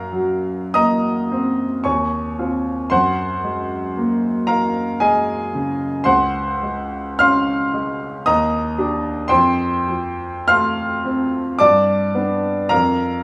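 Classical impressionist solo piano in a slow, rubato 3/4, this nocturnal, hazy passage cut from a longer piece features a clear, natural baby grand placed up front, ranging from Db2 to F6 through chords like Gbmaj7#11 and Dbmaj7 before drifting toward F, G and a closing Fsus4, all set in a moderate stone room reverb with a small room ambience.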